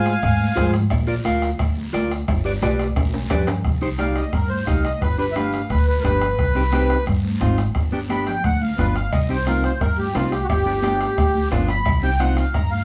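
Cumbia at 175 BPM with a danceable, passionate feel, cut from a longer piece: a reedy, sweet accordion with light tremolo tuning leads up front and takes a solo in C harmonic minor from 3.6 s, while a breathy, mellow flute adds a brief second line at the start, a clean electric guitar accompanies beside a woody pizzicato upright bass, and a soft-beater bombo, raspy guiro, high-tuned congas in the background, and ringing cowbell and timbales that sit out from the solo's start until 9.1 s drive the groove, with the mix heard from further back in a moderate studio room and marked by lossy compression artefacts.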